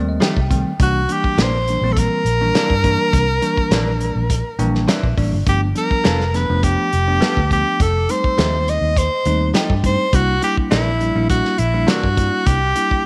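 A bell-like tine electric piano fill and a dark, round, muted fingered bass open this swaggering, laid-back straight-eighth soul blues at 103 BPM in C mixolydian, with a warm soul drum kit and twangy, compressed clean guitar stabs with subtle chorus arriving at 0.2 seconds. From 0.8 seconds an edgy, forceful tenor saxophone takes the up-front solo melody in a jazz style, full of vibrato and scooped notes, over F9, C9 and G9 chords, while the electric piano returns with another fill at 4.3 seconds. The snare is medium-tuned and the kick tight, the guitar stays in the background, and light reverb gives the whole band a small-room ambience.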